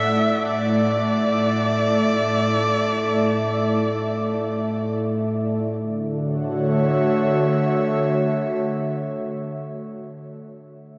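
Floating in free time, this peaceful, weightless ambient piece sets a rich electric violin, bowed with vibrato and portamento and touched by tape echo, singing a brief melody over an airy, breathy pad of detuned, chorused sustained chords until the violin falls away at 4.9 seconds, leaving the pad to linger in a vast, cathedral-like reverb.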